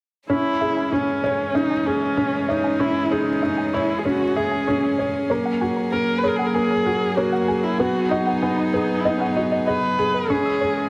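A felt-muted upright piano with audible action noise and a touch of digital delay sits up front playing a mellow riff, while a boxy, expressive viola sings the melody with vibrato and portamento over airy sul tasto string quartet chords and a dark, round synth pluck whose arpeggios carry chorus, delay and a filter sweep in the background, giving this hypnotic, melancholic piano and strings electronica excerpt at 96 BPM in C# dorian a moderate concert hall reverb as it moves through C#m, F#add9 and G#m7.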